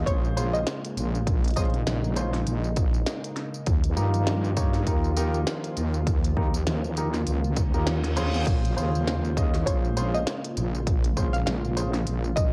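A mellow, detuned analog pad pulsing under sidechain pumping and a heavy, chorused, overdriven wobble bass open this funky, playful glitch hop excerpt at 100 BPM with a swung 16th feel in Bb dorian, moving from Bbm7 to Ebadd9 and back. Just after, a punchy, up-front electronic kick and a tape-toned glitchy kit of tiny snare, clicky hi-hats, crash and tambourine join in, along with natural-sounding baby grand stabs carrying 12-bit sampler grit and analog delay. A dark, woody wave-folded pluck sings a high melody from 0.1 s, drops out, and returns at 9.7 s, while an electronic reverse cymbal enters at 7.7 s, all set in light digital ambience with a homespun cassette character.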